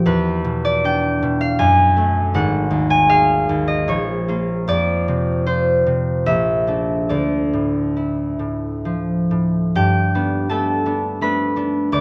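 A mellow, ringing concert harp plays alone and up front in this wistful, mysterious classical fragment in 3/4, its fingerpicked lines spanning G#1 to D6 with a free, rubato pulse, heard through close, detailed microphones in a dry room as the harmony drifts from Em7 through Bbmaj7 and Dmadd9 before turning to Gadd9 at 9.8 seconds.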